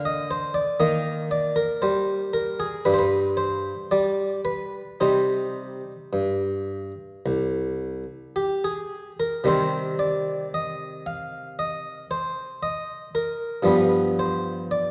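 A solo harpsichord, round and up front with a single set of strings in the Italian style, carries this baroque-style suite movement in C minor from start to finish. The mood is dance-like and flowing, set at a slow 56 BPM in 4/4 with uneven beats and a rubato feel. The plucked lines span a range from C2 up to F5, and the harmony moves from Bb to Eb, passes through an unharmonized stretch at 2.9 seconds, then settles on C minor at 5.0 seconds. A second section begins at 9.5 seconds and turns toward a G7 chord at 13.7 seconds before the cut, as this passage is taken from a longer piece. The sound is dark and warm, bathed in the wet reverb of a concert hall, with the instrument tuned to A4 = 439 Hz.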